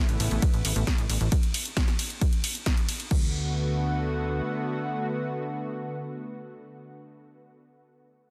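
A lush, detuned unison pad with chorus and sidechain pumping opens this euphoric, soaring uplifting trance drop at 134 BPM in D major, sustaining bright, airy chords that move from Aadd9 to D6 and ring on until 7.5 s. Beneath it, a plucky, funky sawtooth bass with ring-modulated, wave-folded bite and its own sidechain pumping sits up front. An overdriven electronic kick and a punchy analog drum machine with snare, hi-hat, crash and ride cymbals drive the groove until 3.2 s, after which the bass carries on to 4.4 s, all within light digital ambience and a dense, heavily limited master.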